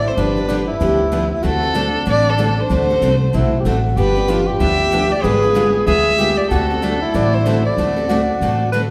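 A reverberant hall sound surrounds this playful, swinging fragment of acoustic string swing in D mixolydian, moving at a brisk 189 BPM with a lilting swing feel. A warm, bowed violin carries the melody with vibrato and portamento, while a breathy, intimate tenor saxophone traces a soft second line beneath it, and a woody, growly upright bass sits up front. Two bright, picked steel-string acoustic guitars, one further in the background, enter at 0.2 s to pick through changes from G7 to D7 and a G#dim7, their finger squeaks audible.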